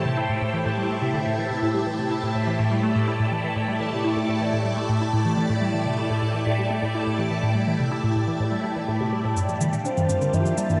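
A swirling, vintage string machine sustains bright, phased chords up front over a juicy, squelchy blip pluck riff and a bubbling stepped-filter texture in the background, all soaked in reverb for a mysterious, cosmic space-music mood, until tape-warm electronic shaker and toms enter at 9.4 seconds and a round, octave-layered synth lead with tremolo and vibrato arrives at 9.9 seconds as the harmony shifts from Am7 to Gm7.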